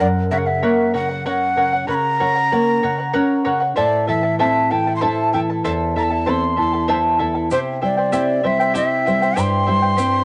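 A steady 3/4 pulse at 96 BPM with a straight feel carries this earthy, melancholic Andean folk excerpt, cut from a longer piece. A large wooden quena leads the melody between C5 and C6, close-miked and breathy, with a crisp, chiffy attack and a reedy, straight tone. Beneath it, a fingerpicked charango adds a shimmering, bright sparkle from its double strings, some doubled at the octave, while a thumb-plucked nylon-string guitar supplies a dark, full-bodied classical depth; both sit up front with a cassette-tape colour. A grainy egg shaker slips into the background at 7.5 seconds. The chords move from F# to Am to C over a single section, and the home cassette recording gives the ensemble a soft, dulled top end within a light, small-room reverb.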